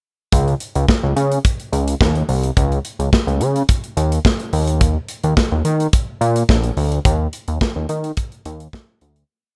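Dry and up front, this short, funky late-night boogie funk piece pairs a fat, nasal, saturated analog synth bass playing a syncopated line with chromatic approach notes against an acoustic studio drum kit driving a four-on-the-floor beat with punchy kick, medium-tuned snare and hi-hat, before fading out from 7.1 seconds to 9.3 seconds.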